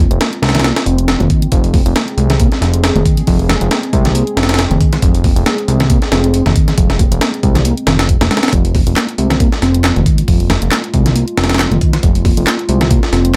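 A compressed, pitched-up breakbeat kit drives this energetic, gritty breaks excerpt, its thumpy kick and high-tuned snare sitting up front with tape-warm grit, layered over a quieter electronic garage kit of handclaps and hi-hat. A fat, detuned sawtooth bass holds down a single minor chord, while a soft, flute-like tonewheel organ riff with fast rotary speaker and overdrive hovers in the background. Beneath them, a dark analog pad sustains chords through chorus, phaser, 12-bit sampler crunch and sidechain pumping, and faint close-miked congas with a thin, bright skin join at 0.5 seconds, all in a dry, reverb-light mix.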